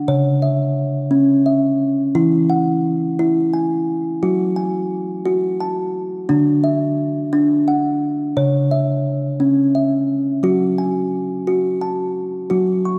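A woody, mellow kalimba plays alone for the full 13 seconds in this hypnotic, meditative world piece in 6/8, its ringing tones sitting up front in a dark production and bathed in a lush church reverb as the harmony drifts from C#m through E, F#m, D and C#m again before settling back on F#m.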